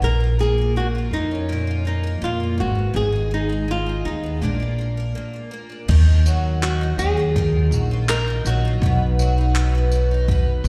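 Tender and wistful, this short acoustic pop excerpt in Eb minor at 82 BPM sets a boxy, fingerpicked flamenco guitar melody up front with slapback echo over a shimmering, octave-doubled twelve-string guitar and a woody, dark pizzicato upright bass, until a gritty, pitched-up jungle sampler-style kit with a thumpy kick, handclaps, tambourine and crash enters at 5.9 seconds, all heard like a live gig through a venue's PA with recital hall reverb.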